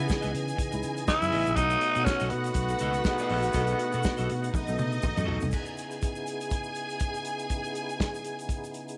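Driving and glamorous, this disco excerpt puts a raspy, growling tenor saxophone up front until 5.0 seconds over a slightly broken-up electric guitar, mellow tine electric piano, growly fingered bass and a tight soul drum kit with a fill from 4.5 seconds, while a lush, distant string section, a fat tonewheel organ with slow rotary speaker and a grainy egg shaker carry on to 9.0 seconds.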